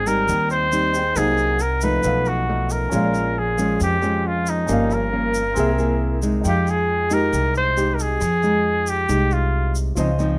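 A straight 4/4 bossa nova groove at 136 BPM sets a smooth, melancholic mood in F minor, with a grainy, dry tube shaker and woody pizzicato upright bass beneath thumb-plucked classical nylon-string guitar. Up front, a clear flugelhorn carries a jazz-style solo melody with light vibrato and a vintage tone until 9.8 s, while an intimate concert grand piano sits in the background, its action noise audible. Light reverb surrounds this short portion of a longer piece, as chords such as Abmaj7, B7#11 and C7alt lead to a closing Fm9.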